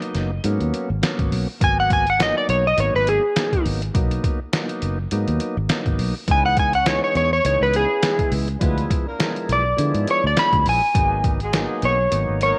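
Straight-eighth soul blues at 103 BPM in G# minor with a brooding, smoky mood, led by a dark, slightly broken-up electric slide guitar played with fingerpicks up front over a reedy, lightly overdriven tonewheel organ with key click and slow rotary speaker, a muffled, pitched-down trip hop sampler-style drum kit with a thumpy kick and tape-warm compression, and a round, foam-muted fingered electric bass, while a distant, roomy horn section with light vibrato and octave doubling enters at 6.3 seconds with sustained chords in the background, all set in light digital reverb.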